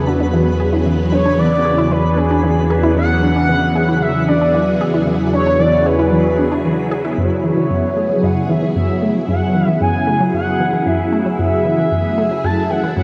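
Ambient, sequencer-driven space music at 114 BPM in a vast, echoing space, mysterious and hypnotic, where a smooth, expressive portamento lead with vibrato, lush chorus, 12-bit sampler grit and tape echo sings over a swirling phased string machine, a squelchy, resonant blip pluck riff with chorus and tape echo, a fat, wave-folded analog bass on E2 and a faint, twinkling granular texture, the bass and texture dropping out around 7.2 seconds as the harmony moves from E7 to F#m7 in this excerpt from a longer piece.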